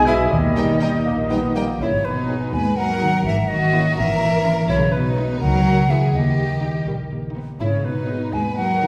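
Cinematic and whimsical, this film cue has a playful, magical feel with a sneaky edge, moving in a lilting 6/8 and cut from a longer piece. In the opening moments a mellow vibraphone with soft mallets rings a melody note in the background, while a distant, roomy oboe, a close-miked bassoon and a tight, very quiet French horn section holding sustained chords all drop away by 1.8 s. Throughout, the bright, airy silver flute carries an expressive second line up front, alongside a focused violin section. A rich, smooth violin section sings the melody in the background from 0.1 s. A ringing, thumb-plucked concert harp spins arpeggios over a very quiet, dark viola section and a bass of smooth, even cello and lush double bass sections, all bowed with vibrato. A wet scoring-stage reverb places the ensemble further back in the room, lending the minor-key harmony a shadowy, storybook glow.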